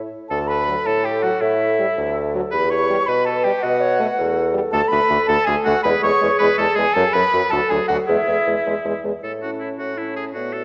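A pure, expressive concert flute carries the melody from the first moment, over a warm French horn in the accompaniment and a close, up-front bassoon on the bass, with a bright oboe on the second line and a dark, distant clarinet both joining at 0.3 s. This spirited, graceful classical-period movement for wind quintet moves in 6/8, its harmony turning toward a new key centre from 4.7 s before settling on A at 9.2 s. The players sit in a wet scoring-stage reverb, and the whole recording carries the worn, warbling pitch drift of old cassette tape, heard here as a short cut from a longer piece.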